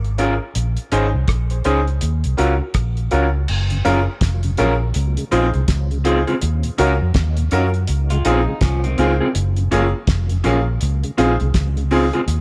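A round, foam-muted electric bass sits up front in this lovers rock reggae excerpt, its punchy, amped tone carrying the low end at 82 BPM in 4/4 with a swung sixteenth-note feel. Beneath it, a cloth-damped drum kit gives a dry, thuddy pulse with a fat snare, tight kick, rim clicks, hi-hat and dark crash cymbals, its top end rolled off. A clear but boxy grand piano with short sustain and a slightly broken-up, lo-fi electric guitar playing stabs fill out the harmony over lush chords such as Gbmaj7, Bbm11, Ebm9 and Dbmaj7. A mellow tonewheel organ with chorus vibrato and a slow rotary speaker slips in very quietly at 3.7 s. Between 8.1 and 9.3 s, a compressed second guitar plays brief arpeggios in the background, adding to the longing, bittersweet mood in a small, intimate room.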